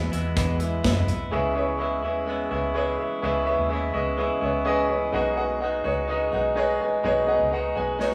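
Uplifting and warm, this short excerpt of piano-driven pop moves at 126 BPM in a straight 4/4, centred on a grand piano that sits up front with a present, polished tone and short sustain as it carries the accompaniment. A bright, twangy clean electric guitar, recorded direct and compressed with a picked attack, plays a riff underneath, while a dark, round, foam-muted fingered electric bass gives a punchy, amped low end. The drum kit, airy with a tight kick and a medium-tuned snare, plays hi-hat, kick, snare and toms only from 0.1 to 1.2 seconds, then returns briefly at the very close. Around 4.2 seconds the piano takes a short fill, and the harmony moves from E to C#m7 and then to G#m7/B. The band sounds as if playing live together in a small room, dressed in a wet, large studio reverb.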